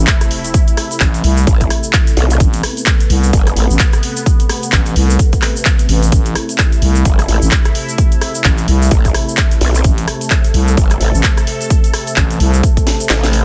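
An impact opens this gritty, aggressive bass house excerpt at 129 BPM in A minor, as a thick, growling FM bass and an overdriven, punchy electronic kick sit up front with a faint sub drop beneath them, while a detuned sawtooth pad holds sustained chords behind, pumping with the sidechain. A house kit of handclaps, hi-hat, rim click and a cracking snare, tape-toned and re-recorded in a small room, drives a swung 16th-note groove alongside a grainy, mellow tube shaker. A second, wobbling growl bass, bright and saturated through a formant filter, cuts in at 1.5 s and returns at 7.1 s, and a drum fill at 12.9 s closes the dry mix as the kick drops out.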